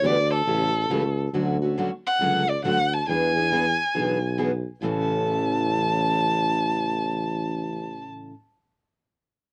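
A home cassette recording with light reverb captures this lively, swinging fragment of acoustic string swing in the jazz manouche style, moving at 138 BPM in A major. A bowed violin sings the melody up front with smooth, expressive vibrato and portamento, while a vintage-toned tuba carries the bass with its own vibrato. A picked steel-string acoustic guitar with a tape-worn, auditorium character supplies the accompaniment through A7, Dmaj7 and E7 before settling on A at 4.8 seconds.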